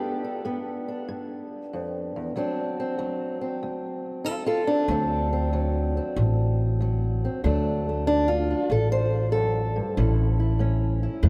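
The recording sits in a vast, echoing space, with a wet cathedral reverb hanging a long tail behind the players. This is a gritty, swaggering slice of acoustic country blues, cut from a longer piece and carried by a swung eighth-note feel in four. An old ladder-braced acoustic guitar takes the melody from the first moment, fingerpicked up front with a dark, boxy tone and the woody character of old strings, ranging from deep low notes up into its upper register. At 4.9 seconds a pizzicato upright bass joins, also up front, adding a warm, steel-strung low end beneath the guitar. The harmony opens on G, settles into a long stretch of D7, and turns to A at 10.0 seconds before the passage is cut off.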